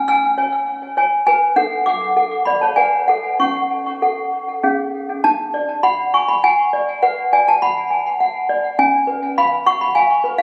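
A clanky, bell-like toy piano carries this brief classical lullaby on its own from 0.0 to 10.4 seconds, sitting up front with plastic hammers and a slightly out-of-tune ring. The mood is fragile and wistful, moving at 101 BPM in a straight 3/4 lilt, with the melody spanning C#4 to E#6. A tape echo trails the toy piano's notes, and its boxy small-room character sits inside a moderate concert hall reverb with a 2.0-second decay, alongside a club reverb and compression from a phone recording made in the room. The harmony opens on C# and passes through D, G#m7b5/B and F#m/C# before a second section begins at 5.2 seconds, moving from D to Bm and settling on C#7. Cut from a longer piece, the fragment ends on that chord.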